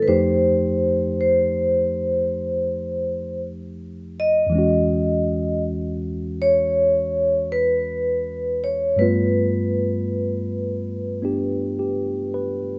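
Intimate and tender, this short slice of a slow jazz ballad at 54 BPM sways with a gentle swing as a metallic, ringing vibraphone struck with medium hard mallets carries the melody with slow motor vibrato and a boxy small-room tone, while a clean tine electric piano heard through a combo amp supports it over F9, E69 and G7 chords, both parts up front in a dry, close sound.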